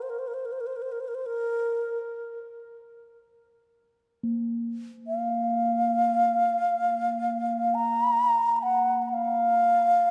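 An airy, up-front bamboo xiao carries an expressive, softly attacked melody with vibrato and a touch of delay through this spacious, meditative world piece in free time, joined at 4.2 seconds by the pure, slowly beating ring of a quartz singing bowl struck with a suede striker, all set in the moderate reverb of a church-like space in a short cut from a longer meditation.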